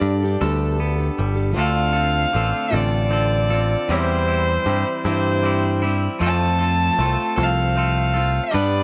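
This wistful, dusty rock excerpt moves at 52 BPM in a straight 6/8, counted in dotted quarters, in D dorian with tuning set to A4 = 439 Hz. Up front, a single bowed fiddle carries the melody between C5 and A5 with a smooth, even tone, light vibrato and a plate reverb. Beneath it, a plugged-in steel-string acoustic guitar picks the accompaniment with audible finger squeak. A bright, twangy clean electric guitar plays a riff, and a direct picked electric bass sits forward in the mix. A very quiet, flute-like tonewheel organ holds soft sustained chords through a rotary speaker until 1.6 s, where the opening Gadd9 gives way to a Dm7, C/E and F progression. The whole recording has a light reverb and the character of cassette tape.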